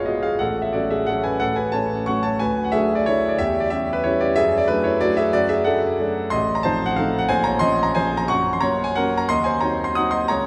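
A solo concert grand piano opens this short cut from a longer classical waltz, its tone clear and natural with a deep bass, set up front in the sound. The mood is nostalgic and bittersweet, moving in 3/4 at 182 BPM, with uneven beats and a rubato feel that lets the pulse breathe. Across its span from Ab1 to Eb6, the piano carries a harmony that drifts from F#m/A through D and C#dim/E, then shifts toward darker colours with F7/A, Bbm and Gb before settling on Cdim/Eb near 9.3 seconds. A long cathedral reverb, ringing for about 4.5 seconds, surrounds the instrument with the resonant air of a church or concert hall. The whole passage forms a single section lasting about 10.5 seconds.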